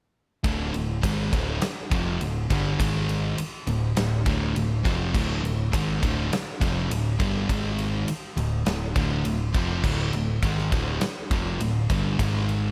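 A studio-reverb sheen surrounds this swaggering, energetic hard rock excerpt at 102 BPM in 4/4, cut from a longer piece and running from 0.4 to about 12.7 seconds. Two sludgy overdriven guitars play the riff, one warm and the other dark and set in the background, while a growly, punchy picked bass holds the low end and a huge arena drum kit sits up front with bright cymbals, a medium-tuned snare and a punchy kick. The harmony moves between D5 and G#5 power chords.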